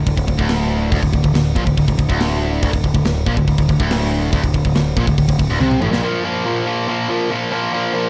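Heavy metal at 141 BPM in 4/4 with a straight feel, this short excerpt in D minor sounds relentless and aggressive. A double-tracked, overdriven electric guitar sits up front with a bright, picked riff on a D5 chord, while a growling picked electric bass, direct and amped with overdrive, digs in low beneath it. A tight metal drum kit drives the opening section with a tight kick, medium-tuned snare, toms and crash, its cymbals glinting in an airy, polished space. A drum fill at 5.6 seconds leads into a half-time passage at 6.0 seconds, where bass and drums stop and the guitar carries on alone over Bb5 until 8.1 seconds. The production is dark and warm, with a small room ambience.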